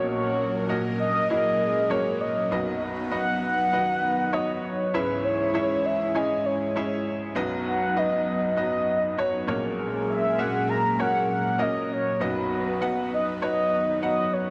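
Hopeful and warm, this short pop passage from a longer piece places a round, warbling horn-like synth lead with chorus and tape echo up front, beside a worn, woody, slightly detuned upright piano carrying the accompaniment. Beneath them, an airy, breathy pad holds sustained chords, while a distant French horn section with light vibrato adds a second line in the background. A moderate plate reverb opens up the space as the harmony moves from F#/A# through B and C#m and back to B.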